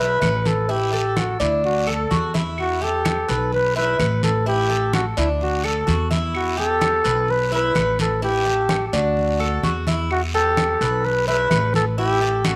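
A moderate echo-chamber reverb and small-room ambience give this short cut from a longer Cuban son and guajira piece an intimate, slightly hazy sound. Up front, a solo trumpet with a bucket mute carries the melody in a veiled, gritty, jazz-style voice, full of vibrato, scooped notes and growling tones. Beneath it, a bright, metallic Cuban tres picks arpeggios on double strings, some doubled at the octave, while a dark, thumpy upright bass with gut strings is plucked in the low register. From 0.2 seconds the percussion joins: low-tuned congas with a thick, warm skin, a raspy guiro, and woody claves set distant in the background. Cycling chords such as B7sus4, A5, D and Emadd11 give the groove a nostalgic yet danceable feel.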